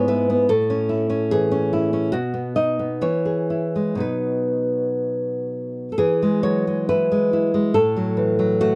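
The rhythm moves in a flexible 2/4, pushed and pulled with rubato at roughly 59-74 BPM. This tender, sunny romantic piece for solo classical guitar sits in E major, tuned to A4 = 441 Hz, and is cut from a longer work. A fingerpicked nylon-string guitar plays alone from 0.0 to 8.8 seconds, ranging from G#2 to D#5, its fresh strings giving a warm, acoustic sound placed up front. The harmony passes through A, B and E before a new section opens at 6.0 seconds on E and turns to F#m/A near the close. The sound is a dry, close 1970s-style studio recording with light reverb.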